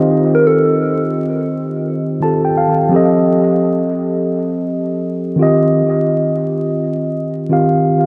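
A loping 4/4 groove with a heavy swing on the sixteenths gives this short hip hop fragment, cut from a longer piece, its nostalgic and reflective feel. A mellow tine electric piano carries the accompaniment throughout, sitting clean and up front in the mix while a cassette tape colour, a low-pass filter and tape echo soften its edges. A soft struck synth lead with a round, keys-like FM character appears only briefly, from 0.3 to 1.0 seconds, its fast attack decaying gently under a warbling haze of chorus, tremolo and tape echo. The electric piano adds a fill beginning at 1.9 seconds as the harmony moves from Eb6 to F7 and back to Eb6. A wet spring reverb, an echo-heavy mix and a bed of vinyl crackle lend the whole piece a dusty, nostalgic atmosphere.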